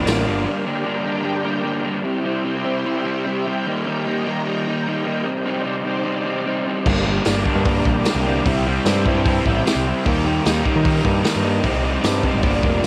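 This moody, cool indie rock excerpt opens with a brief full-band hit that falls away by 0.5 seconds, leaving a bright, up-front crunchy overdriven guitar riff over a silky analog string pad. The pad sits in the background, sustaining chords with a slow attack, long release, vibrato and ensemble chorus. Together they move through Gm, C, Eb and Cmadd9 at 150 BPM in a straight 4/4. At 6.9 seconds the band returns in full: a second overdriven guitar, placed further back with lush chorus, joins the riff, and a growling picked electric bass, overdriven and up front, anchors the low end. A vintage drum kit, recorded in a small room with a punchy kick, a medium-tuned snare, hi-hat and crash, enters alongside, and its rolled-off top carries a cassette tape character. A jingly tambourine follows in the background from 7.3 seconds, and the whole take has the feel of a home cassette recording with studio reverb.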